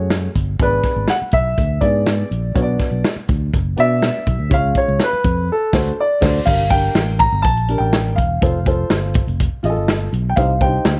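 A dark, smooth concert grand piano takes the featured melody from the start over a woody, boxy upright piano, a round, punchy fingered electric bass and a natural, up-front country drum kit in this passionate, driving excerpt of uptempo 1960s-style soul at 123 BPM, where a band accent at 5.5 seconds leads into a move to G minor at 6.5 seconds, all set in a studio ambience with nothing above 7.6 kHz.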